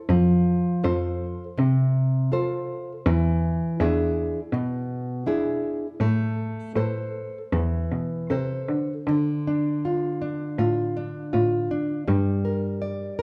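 Mournful and passionate, this excerpt from a fado-style ballad moves with a rubato feel in 4/4, as a dark, full-bodied fingerpicked nylon-string guitar carries the accompaniment up front, its finger squeaks audible. A rich bowed cello with light vibrato supplies a smooth, even bass line beneath, shifting with the harmony from F through E7 and Amadd9 to Dm at 9.1 s and Gm at 12.1 s. A wet recital hall reverb wraps the pair in a dark, warm production.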